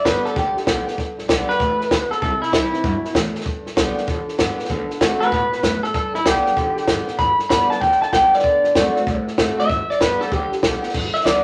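A twangy, slightly broken-up electric guitar through a small old amp carries the melody up front in this rollicking, retro rockabilly piece in G major at 193 BPM with a swung feel, dropping out from 3.1 to 5.2 seconds, while a boxy, picked, ladder-braced acoustic guitar with finger squeak supplies the accompaniment, a woody, thumpy pizzicato upright bass on gut strings sits in the background, and a dry compact cocktail drum kit with a high-tuned snare, tight kick and dark cymbals plays close up, the whole set in a wet studio reverb.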